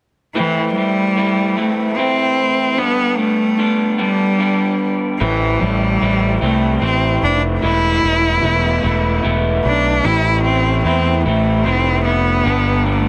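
Dark and cathartic, this slow 6/8 rock excerpt in A minor at 50 BPM sets a rich, nasal cello melody, bowed with vibrato and portamento through digital delay, over slightly broken-up lo-fi electric guitar arpeggios, also delayed, before a punchy fuzz picked bass enters at 5.2 seconds, all in moderate studio reverb with a dense, heavily limited modern master.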